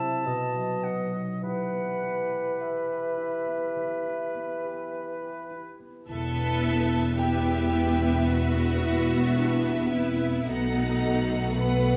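A reverberant recital-hall sound surrounds this slow, rubato excerpt of a romantic orchestral movement, cut from a longer piece and carrying a yearning, solemn mood. It opens with woodwinds over a ringing, thumb-plucked harp playing arpeggios: an airy, distant flute and a very quiet, mellow clarinet carry second lines alongside a softly attacked oboe with light vibrato. Beneath them, an up-front bassoon provides accompaniment. The oboe and bassoon drop out at 5.7 s, and at 6.1 s the strings and brass arrive. A lush violin section takes the melody with focused vibrato, while a second, symphonic violin section adds a second line and a close viola section fills in the accompaniment. Underneath, a smooth, even double bass section sits up front, with a cello section set further back, and a present French horn section holds sustained chords in the background, all over harmony that moves between B7 and Em.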